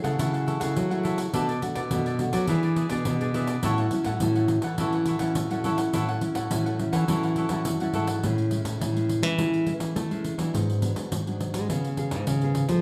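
Samba and choro at 104 BPM in A major, playful and joyful, cut from a longer piece with the band playing live in one room under a moderate studio reverb. A crisp, picked cavaquinho, a fingerpicked classical nylon-string guitar sitting up front, a full-bodied nylon-string guitar with fresh strings carrying the bass line, and a jingly pandeiro struck with hard hands, close and dry, move through F#m9, Bm7, E7 and A6. The cavaquinho drops out at 8.2 seconds as the second section turns to Amaj7, G#m7b5 and C#7.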